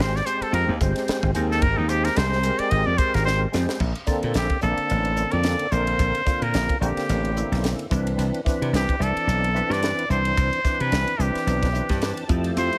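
A nasal, straight-muted trumpet leads this soaring, funky electric jazz fusion excerpt with a jazz-style solo full of vibrato and scooped notes, set in slapback echo over Bb lydian at 110 BPM in 4/4 with a 16th-note swing. Beneath it, an overdriven tonewheel organ adds gritty, percussive accompaniment through chorus vibrato and a slow rotary speaker, while a bright, up-front slap bass and a crisp, airy fusion kit with a high-tuned snare and punchy kick drive the groove in a small room. A drum fill at 3.3 seconds leads from Abmaj9 into Bbmaj9 and then Cmaj9, and the organ takes a short fill at 11.7 seconds before the cut.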